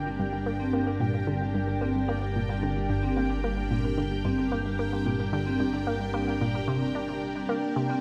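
A straight 4/4 pulse at 111 BPM drives this hypnotic, mysterious stretch of sequencer-driven space music in G minor, cut from a longer piece and resting on a single Gm chord. A fat, saturated analog bass holds G1 up front, while a round, nasal analog pluck with a fast attack and short decay repeats a riff between G2 and D4, coloured by chorus and tape echo. A lush, vintage string machine sustains chords from D4 to Bb4 beneath a slow attack and ensemble chorus. From 0.1 seconds a vibraphone played with medium mallets, motor off, adds ringing, metallic arpeggios from G3 to G4, its boxy small-room tone trailed by tape echo. High at G5, a quieter bubbling texture of random resonant filter steps drifts through chorus and its own reverb, and the whole mix sits deep in an echo-heavy plate reverb of 2.5 seconds.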